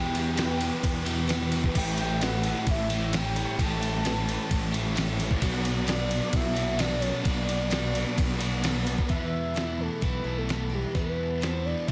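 A crisp 8-bit drum machine with a thumpy kick and fat snare sits up front from 0.1 s, joined by a jingly tambourine in the background until 8.7 s and a growling, bright overdriven fingered bass. This brooding, melancholic shoegaze and dream pop cut, moving from Em through A7 and Bm7 back to Em, layers riffs from a thick fuzz guitar with analog chorus and two biting overdriven guitars, one carrying reverse reverb and the double-tracked one dropping out at 9.1 s. Above them a soft, round octave-layered synth lead sings a sustained, dark melody with chorus, phaser, vibrato and tape echo, while a very quiet, shimmering twelve-string acoustic guitar picks arpeggios with faint finger squeak, all in a dry, dense, heavily limited modern master.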